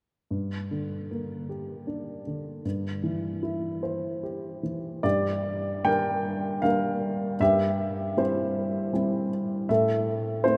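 Wistful and melancholic, this short classical passage for solo piano is cut from a longer piece and unfolds in a lyrical, rubato triple metre around 77 BPM, its beats stretching unevenly. A dark baby grand carries everything from 0.3 s to 10.6 s, spanning G2 to G5 in G dorian, tuned to A4 = 444 Hz. Its tone is mellow and intimate, with short sustain and the clatter of its action audible, and it sits up front in the mix. The harmony moves between Gm and C/G, and the phrase opens onto a second section at 5.0 s before turning to Am at 9.7 s. Around the instrument, a cathedral reverb with a 5.5-second decay places the playing in a vast, echoing space, lending the close, natural piano a haunting distance.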